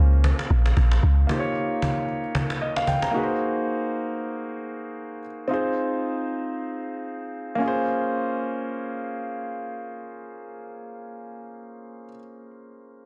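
This amapiano excerpt feels soulful and deep, moving in 4/4 with a swung sixteenth-note lilt. A grand piano carries the accompaniment up front throughout, ending at 13.1 seconds, its warm, long-sustained chords cycling through Bbm9, Eb7, Ab9 and Fm7 before returning to Bbm9. A dark, round log drum bass with a fast attack, decaying tail and noise-layered FM tone sits forward in the mix at the opening, stopping at 1.3 seconds. A woody, acoustic cajon played with hard hands sounds distant in a large room, its faint snares roughened by vintage 12-bit sampler grit, and it ends at 3.3 seconds. Studio reverb and a dense, heavily limited modern master frame the passage, which is cut from a longer piece.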